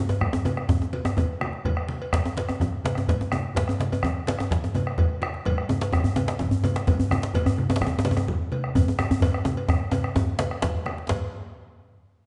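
Festive and driving, this West African traditional drum ensemble piece in a straight 4/4 gathers pace throughout, with cowbell, two djembes, bombo and congas all entering within the first fraction of a second. A deep djembe with metal rattles and a round bombo sit up front, while the metallic cowbell, low-tuned thick-skinned congas struck with hard hands, and a very quiet, softly played medium-tuned djembe fill out the ensemble. The wet recital hall reverb gives a resonant glow, and a drum fill from 9.2 to 11.1 s leads into a brief closing section before this cut from a longer piece ends.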